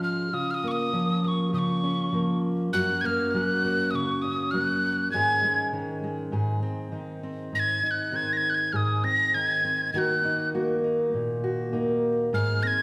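Warm and nostalgic, this short excerpt from a longer piece is an acoustic folk duo moving at an unhurried 100 BPM in a straight 4/4. A breathy, mellow tin whistle carries the melody high in its register, its vibrato and chiffy, crisp attack sitting up front. Beneath it, a fingerpicked steel-string acoustic guitar with fresh strings supplies the accompaniment, finger squeaks audible as it ranges from low bass notes into the middle register. Both instruments play throughout the full 12.8 seconds, with the harmony moving from Bbm/Db through Gb and a suspended Absus4 resolving to Ab, then to Ebm before returning to Ab. The pair is set in a reverberant recital hall whose 1.5-second decay lends a church-like glow, and the instruments are tuned slightly sharp, to A4 = 443 Hz.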